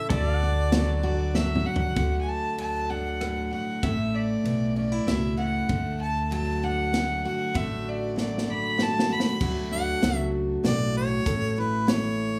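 Down-home and nostalgic, this honky-tonk and classic country excerpt in 3/4 is cut from a longer piece, opening with a scooped, vibrato-laden harmonica and the volume swells of a background pedal steel over a bright, full-bodied picked dreadnought guitar and a woody, dark pizzicato upright bass, before a natural drum kit with a punchy kick fills into a clear, earthy bowed fiddle solo up front from 2.0 s to 9.4 s, after which the harmonica returns at 9.7 s in a small, reverberant room.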